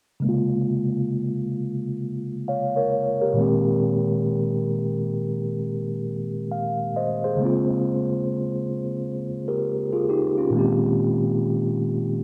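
The sound sits in a moderate plate reverb with a long tail, giving the short clip a soft, roomy glow. This is a melancholic, reflective hip hop piece in 4/4 with a swung sixteenth-note feel, cut from a longer work. Its only part is a mellow tine electric piano, clean and up front, heard as if through its own built-in speakers and darkened by a low-pass filter. The piano plays accompaniment across a broad span from Bb2 to F5, from 0.2 seconds to 12.2 seconds, while a filter sweep moves over it for that whole stretch. The harmony alternates between Bbm7 and Abmaj9/Bb, settling back on Bbm7 at 7.4 seconds before turning once more to Abmaj9/Bb, a gentle, unresolved loop that suits the pensive mood.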